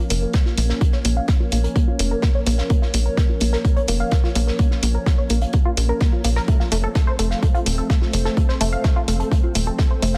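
A moody analog pad holding sustained chords and a tight, detuned sawtooth arpeggio with chorus, tape echo and a filter sweep open this driving, melancholic melodic techno excerpt at 127 BPM in Bb harmonic minor, set over a small-room acoustic kit of hi-hat and a medium-tuned snare with a rolled-off top. A punchy electronic kick sits up front alongside bright layered electronic hats and a plucky sequencer bass, while the sidechain pumping on the pad, arpeggio and bass makes them breathe with the beat. The harmony moves from Bbm to F at 6.5 seconds, all under light reverb in a dense, heavily limited modern master.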